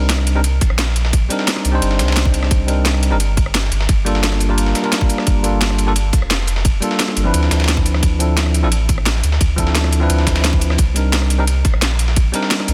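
A dense, heavily limited modern master set in a digital ambience frames this dreamy, soulful slice of liquid drum and bass, cut from a longer piece and running at 174 BPM in 4/4 with a straight feel in C dorian. A bright, bell-like tine electric piano carries the accompaniment through a delay, its clean, direct tone outlining a chord cycle that moves from Cm9 to Gm9, Dm9 and back to Cm9 at 10.8 seconds. Beneath it, a deep, round sine sub bass sits up front with a fast attack and mellow, sustained notes. Two drum kits play from 0.1 seconds: a layered, tape-warm electronic kit with a cracking snare, crisp hats and rim clicks, and a gritty, compressed sampler-style soul kit whose ride cymbal and medium-tuned snare were re-recorded in a large room and thinned by high-pass filtering. A tight, produced electronic kick enters at 0.6 seconds and drives the groove up front until just before the close.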